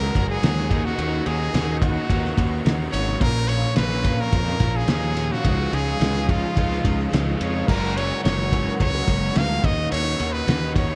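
Indie rock at 108 BPM in F# major, wistful yet upbeat, where a brilliant, forceful trumpet with vibrato and scooped notes carries the melody through analog delay over a very quiet, shimmering string machine, a biting overdriven guitar riff with ensemble chorus and delay, a bright, twangy twelve-string electric guitar riff, a round fuzz bass, and a cloth-damped, thuddy drum kit with a fat snare and dark cymbals, all in a dark production with light reverb, in a brief cut from a longer piece moving from F#add9 through D#m7, A#m and C#add9.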